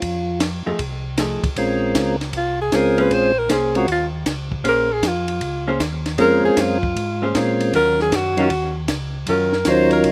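Soul jazz organ trio in Bb minor at 156 BPM with a swung 4/4 feel, soulful and bluesy, where an up-front percussive tonewheel organ with a slow rotary speaker carries the melody over a round, dark organ bass with chorus vibrato, a compact cocktail drum kit with punchy kick and high-tuned snare, and a clean, compressed hollow-body guitar with slapback echo accompanying from 0.7 seconds, before a clear, close-miked alto saxophone enters at 2.4 seconds with vibrato and scooped notes for a solo over Bbm9 and Ebm9 chords, in a dry outdoor recording.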